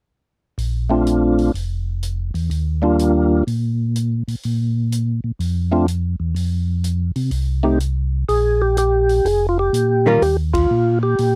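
Soul jazz organ trio in Bb major at 125 BPM, swinging and greasy, cut from a longer piece. A round, dark tonewheel organ carries the bass line through chorus vibrato and a slow rotary speaker, while a quieter big-band drum kit with a punchy kick swings on hi-hat and ride, and from 0.9 seconds a flute-like second organ takes the melody up front with key click and third-harmonic percussion through the same slow rotary and vibrato. The dry, close 1970s-style studio sound lets a brief picked hollow-body guitar figure stand out at 10.1 seconds, just before a band accent at 10.5 seconds.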